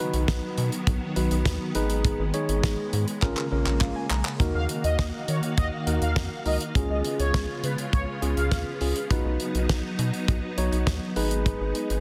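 A rubbery, bouncy square bass and a dry, up-front 70s drum kit with a fat snare, handclaps and hi-hat drive this cool, melancholic synth-pop excerpt, as a clean, bright tine electric piano and a silky vintage string machine with ensemble chorus fill in the chords. The drums add a fill from 3.2 seconds, joined by a piano fill at 3.5 seconds, and a round, brassy synth line with phaser and tape echo plays from 4.5 to 8.6 seconds, all set in a lush hall reverb under a dense, heavily limited master.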